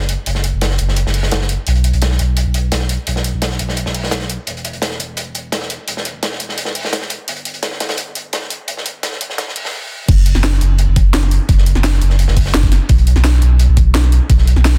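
Liquid drum and bass at 171 BPM with a dreamy, rolling mood, built on a deep, sustained sub bass with octave that sits up front from the opening, beneath a gritty, dark breakbeat kit of hi-hat and snare and an overdriven electronic kit with a cracking snare, bright hats and crash cymbal. A filter sweep runs through the build-up until a brief stop at 9.7 seconds, and at 10.1 seconds the drop lands as a knocking, overdriven electronic kick drum joins. The mix is dry, dense and heavily limited, and the clip is cut from a longer piece.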